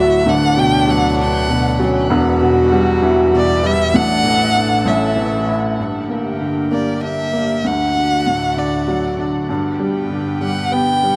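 A rich, boxy violin carries the melody up front with expressive vibrato and portamento, while a clear, distant French horn adds a second line until 5.4 seconds in this romantic, heartfelt six-eight pop ballad fragment. Underneath, a felt-muted upright piano plays mellow, intimate, vintage-toned accompaniment, and an airy, breathy pad with a detuned, chorused shimmer holds sustained chords. Tape echo on the violin, horn and piano, plus a wet spring reverb in a small room, gives the mix a heavy, echoing sheen.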